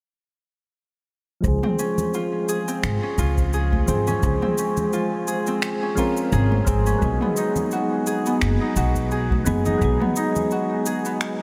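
Blissful and relaxed, this short sunset chillout excerpt sways with a gentle swing in 4/4, drenched in a huge, dreamy reverb. Soft, round electric-piano-like synth keys sit up front, mellow and gently shimmering with chorus, tremolo and delay while a filter sweep runs through them from 1.4 to 11.4 seconds, moving from a Dbmaj7 to a Cb6 chord at 7.0 seconds. A woody, thumpy pizzicato upright bass also sits up front, and a fingerpicked Celtic harp adds ringing arpeggios that echo through a delay. The rhythm comes from a layered, overdriven deep house kit of finger snaps, shaker and toms, joined by a deep analog electronic kick with small-room ambience in the background. High-tuned congas, bright and dry under soft hands, add a light touch far back in the mix, and the bass drops out at 9.9 seconds.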